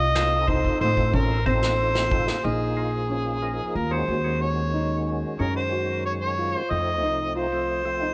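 Progressive instrumental band music in 9/8 at 183 BPM (eighths) in Bb minor, intricate and driving, with an up-front mellow harmonica melody carrying light vibrato, scooped notes and delay over dark, boxy grand piano arpeggios, a woody, thumpy pizzicato upright bass, and a fat, lightly overdriven tonewheel organ with key click, chorus vibrato and slow rotary speaker, while a distant, roomy brush kit plays a fill from 0.5 s and stops at 2.4 s as the chords move from F7 to Bbm7, Ebm7 and Gb5, all under light studio reverb and the warbling pitch drift of worn cassette tape in this short excerpt cut from a longer piece.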